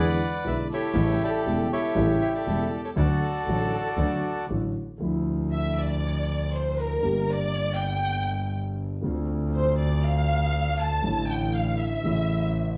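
Elegant and nostalgic, this rubato tango excerpt opens with a reedy, close-miked bandoneon carrying the melody until 4.5 s. Alongside it sit a dark violin section on a second line, a mellow vintage concert grand with audible action noise and deep bass, and an earthy, nasal bowed double bass with light vibrato, all set in a wet studio reverb heard from further back in the room. From 5.0 s the violin section takes the solo, its expressive portamento and smooth top leading the new section to the end.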